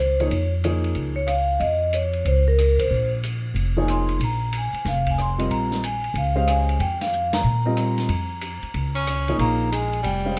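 Intense, searching modal jazz opens with a ringing, close-miked vibraphone played with medium mallets and its motor off, carrying the melody over a woody, thumpy upright bass on gut strings that sits up front. The tune moves at a brisk 185 BPM in 4/4 with a swing on the eighths, holding to Bb dorian over a Bbm9 chord. A concert grand piano with deep bass and audible action noise comps in a brief touch near the start, then returns from 3.8 seconds, while an open acoustic drum kit in a small room, with dark cymbals and a boomy kick, sits lower in the mix on hi-hat, ride, rim click and snare. The band lands two shared accents along the way, and at 9.0 seconds a bright tenor saxophone with light vibrato and scooped notes steps forward as a second line. Light reverb gives the dry vibraphone and the other parts a little air in this passage cut from a longer piece.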